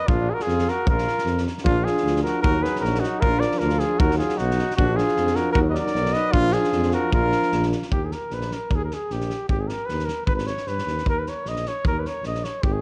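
A close-miked cornet opens this fiery, restless Balkan brass band excerpt up front with the melody, joined at once by a soft-attacked trumpet with light vibrato playing a second line in the background. A mellow tuba with a smooth top and a gritty, saturated acoustic drum kit with a punchy kick and medium-tuned snare drive the 2/4 groove with a swung, loose feel. At 1.7 seconds a clear, vintage-toned euphonium and a dark French horn, each with light vibrato, add background accompaniment over the repeated chord changes. The trumpet, euphonium and horn drop out at about 7.7 seconds, leaving the cornet, tuba and drums to carry a new section from 7.9 seconds. A moderate recital hall reverb and a dusky, warm production give the band a rounded, roomy sound.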